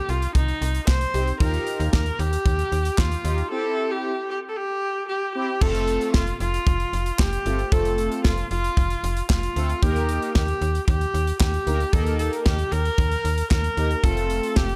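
Synth-pop with a nostalgic yet upbeat mood, cut from a longer piece and set in a straight four-beat pulse. A single bowed viola carries the melody up front, its tone clear, smooth and even, while a slap-like FM bass sits beside it with a snappy, metallic, quickly decaying attack. A polished, airy studio drum kit drives the track with a tight kick, a medium-tuned snare, handclaps, hi-hat and bright crash cymbals. From 1.1 s, analog synth brass adds fat, detuned sawtooth chords with a bold bite, a filter sweep, chorus and phaser, and both the brass and the viola carry vibrato. A break arrives at 3.5 s, and at 5.6 s the music moves into a new section that settles on F and Eb chords, all within a dark, lightly reverberant small-room production.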